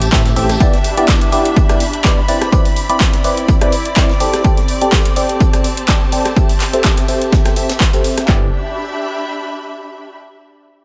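An uplifting, feel-good piano house piece at 125 BPM in G major opens with a fat, detuned sawtooth bass, a distant tambourine, lush bowed symphonic strings, and overdriven analog drum machines with a punchy up-front kick, handclaps, hi-hat and rim click; the bass and tambourine drop out at 0.6 s. A biting, percussive FM electric piano carries the riff through phaser, dub echo and a low-pass filter sweep, sharing sidechain pumping with the bass and strings, while a gritty, very quiet sampler-style breakbeat kit adds hi-hat and snare over chords that move through Am7, G6, Cmaj9 and D7sus4. The drums fall away around 8.3 s as the bass returns briefly, leaving the strings to sustain alone until 10.2 s.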